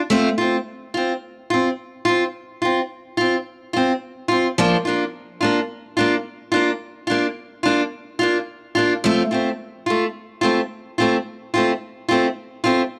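A light studio reverb gives this short cut from a longer highlife piece a clean, close sound. A single picked steel-string acoustic guitar carries everything, sitting up front with a bright, fresh-stringed tone and an audible finger squeak that adds a human touch. It plays alone from 0.1 seconds to 12.8 seconds, staying within a compact middle range from F3 to F4. The harmony moves from an open F5 to Bb at 4.6 seconds and settles back on F. In a straight 4/4 feel, the mood is sunny and danceable, with a concert-guitar clarity that keeps the passage lively and inviting.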